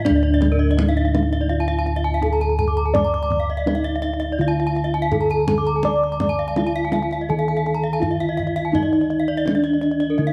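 Up-front bossed gongs carry the bass with a round, beating bronze tone from padded beaters, their sound mellow and vintage in this brilliant, ceremonial Balinese gamelan passage cut from a longer piece. A bronze metallophone struck with padded disc mallets plays the soft, airy melody. Two more metallophones played with horn mallets add bright arpeggios whose paired tuning gives a shimmering beat, while a kendang played with soft hands adds deep, band-limited percussion, all captured close and in detail with light reverb over about 10 seconds.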